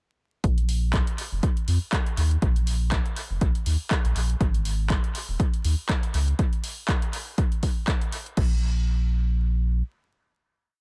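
Deep house with a late-night, deep mood and a swung sixteenth-note feel, where an overdriven, up-front electronic kick drives a four-on-the-floor pulse from 0.4 seconds while a round, sine-like sub bass plays a syncopated riff with sidechain pumping, a punchy analog drum machine adds hi-hats, handclaps and crash cymbal through dub echo, and the echo-heavy mix carries vinyl crackle until the drums stop at 8.5 seconds and the bass sustains a final note to 9.8 seconds.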